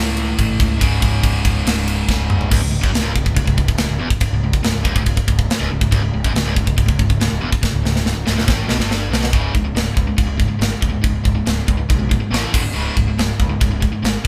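Heavy metal with a relentless, epic mood, heard in a short cut from a longer piece played by a band live in one room with light reverb. It opens in half time over A and C#5, with a drum fill leading into a stretch where the harmony drops away and the full band riffs outside any chord, then another fill carries it into a final passage moving through C#5, A5 and D5 before returning to C#5. The double-tracked, overdriven electric guitar drives the riff in a low register, bright and picked. Beneath it, the fuzz-laden picked bass sounds punchy and direct, its overdrive adding grit to the low end. The drum kit enters at 0.2 seconds and sits up front, acoustic and polished in a big, airy room, with bright china and crash cymbals, a medium-tuned snare, a tight kick and toms.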